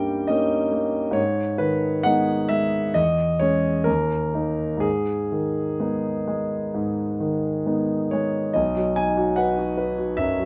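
A concert grand piano, up front and close-miked in light reverb, carries this romantic classical character piece alone, its deep bass and long sustain giving an open, detailed sound across a range from B1 to A#5. The mood is bittersweet and passionate, moving in 4/4 with free rubato at roughly 61-75 BPM in G# minor, tuned to A4 = 438 Hz, as the harmony turns from D#7/G through G#m, C#m/E and D#5 back to G#m. At 8.6 seconds a new section opens on a B chord before this passage, cut from a longer piece, ends at 10.5 seconds.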